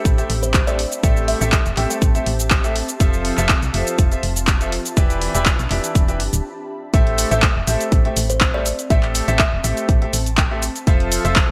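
A bright 1980s-style digital production with light reverb frames this energetic, soulful piano house excerpt in A minor at 122 BPM, where a brilliant, intimate grand piano riff with lush chorus and sidechain pumping rides over a round, dark FM bass, a punchy up-front electronic kick and an analog drum machine of handclaps, hi-hat and shaker in gated reverb, while an ethereal pad breathes in the background and a woody kalimba melody with delay appears at 0.4 and 8.3 seconds, around a brief stop that gives way to the drop at 6.9 seconds.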